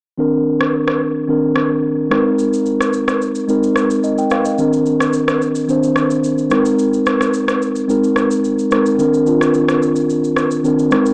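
An electronic rim click and shaker, produced and re-recorded in a large room, enter at 0.6 s to set a straight 109 BPM afrobeats pulse in 4/4, beneath a mellow, clean and up-front tine electric piano that opens at 0.2 s and sways between Cm9 and Bb9sus4 in C minor, all bathed in moderate spring reverb and a cassette-like, small-speaker home-recording tone that makes this short cut from a longer piece feel hypnotic and sultry.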